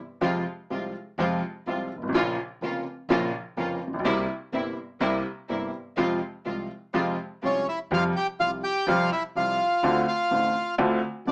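A reedy, close-miked bandoneon enters up front at 7.4 seconds with the melody, shortly before the music moves from F harmonic minor into F major at 7.9 seconds, in this elegant, passionate tango cut from a longer piece at 125 BPM in a rubato 4/4. Throughout, an intimate, slightly detuned upright piano with audible action noise carries the accompaniment, joined at first by soft-attack, floating bowed string stabs that stop at 7.6 seconds. A growly pizzicato upright bass with steel strings sits in the background, and moderate studio reverb gives the whole a small-speaker sound.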